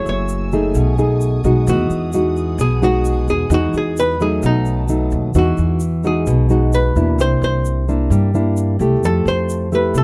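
A dry, dark production frames this breezy, romantic bossa nova excerpt at 131 BPM in E major, where a clean, hollow-body archtop guitar picks the melody up front over thumb-plucked nylon-string chords with audible finger squeak, a woody, thumpy gut-string upright bass, a grainy egg shaker, and a reedy, lightly vibratoed string section murmuring sustained chords in the background until 5.3 seconds, as the harmony moves from F#m9 through Emaj9 to close on Fmaj9.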